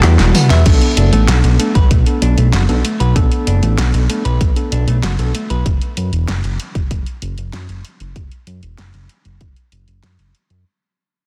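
Dense and heavily limited with light reverb, this moody, cinematic synthwave excerpt in B minor at 96 BPM opens on a drum fill over a barely audible detuned analog pad, then a punchy electronic kick enters at 0.7 s beneath a fat sawtooth bass with sidechain pumping and a filter sweep, a pop drum kit of fat snare, handclaps, tambourine, toms and crash, clean semi-hollow guitar arpeggios with delay until 5.6 s, and tine electric piano stabs carrying a medium tremolo, as the passage fades out.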